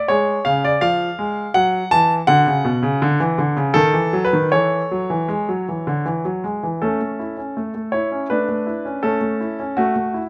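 A clear baby grand piano opens alone, its polished, present tone sitting up front in a classical-period sonatina written in A major and moving at 81 BPM in a straight 3/4. The restless, serious harmony passes from C# through F#m, D and a D#dim before settling onto A/E and E, and the second section arrives at 6.8 seconds with a return to A. Close, detailed microphones and light reverb frame the solo playing, which spans B2 to A5 in this short passage cut from a longer piece.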